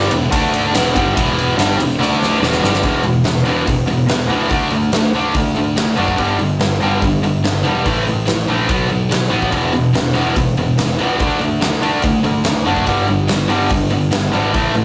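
Driving straight 4/4 at 144 BPM in E minor, this menacing, aggressive hard rock excerpt pairs a heavy high-gain guitar with a bright, up-front overdriven electric guitar on riffs, over a dark, round fuzz bass and a huge arena drum kit with a fat snare, punchy kick and bright cymbals. A drum fill from 2.0 to 2.8 s leads into a longer stretch built on power chords moving through E5, D5, G5, A5 and B5. The sound is a rough rehearsal-room capture with moderate studio reverb.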